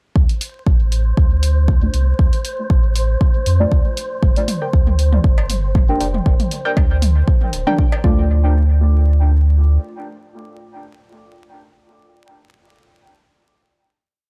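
A dry, gritty hardware recording with a faint vinyl crackle gives this short, complete dub techno piece a nocturnal, deep atmosphere over a lightly swung 16th-note groove. An up-front four-on-the-floor kick, tape-warm and small-room in character, drives the groove with a programmed hi-hat, while a clean, smooth pure sine sub bass plays a dub-style line that pumps against the kick. Sparse, echoing chord stabs carry the harmony: a deep, mellow stab with chorus and phaser moves one shape in parallel, and a filter sweep runs across the synth stab through the groove. From 4.2 seconds, electronic toms and cowbell add echoing percussion, joined shortly after by a muted, full-bodied filtered dub stab with a plucky, detuned edge. Above it all, an airy, breathy wind-like noise texture holds a single high note in its own reverb. The groove gives way at 8.3 seconds to a final hit, with the stabs and their dub echoes ringing on to the close.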